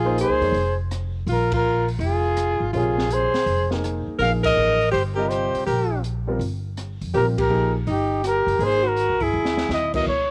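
Modal jazz excerpt at a hypnotic, intense 164 BPM swing in 4/4, where a breathy, whispered trumpet carries the melody up front with vibrato over a clear alto saxophone second line with subtone and scooped notes, the saxophone carrying a cassette-tape tint, while a growly pizzicato upright bass anchors the bottom, a woody, long-sustaining upright piano with a vintage tape color comes back in at 2.7 s, and an open drum kit with dark cymbals, a high-tuned snare and a boomy kick plays a fill at 9.3 s as the band hits recurring accents over Bbm9, Eb and Ab7b13 in a small, lightly reverberant home-cassette room.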